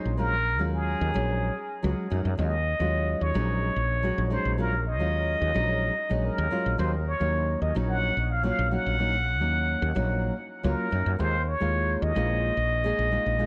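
An echo-heavy mix with light reverb and a studio ambience opens this short cut from a longer sunset chillout piece, relaxed and wistful in mood. A fingerpicked nylon-string guitar, classical in tone with audible finger squeak and a touch of analog delay, plays accompaniment alongside a dark, growly fretless electric bass that sits round and up front. Carrying the melody, a plunger-muted trumpet in a breathy jazz style offers a whispered, wah-wah line bathed in dub echo over chords moving from Ebm11 to Ebm7/Bb and on to Db69.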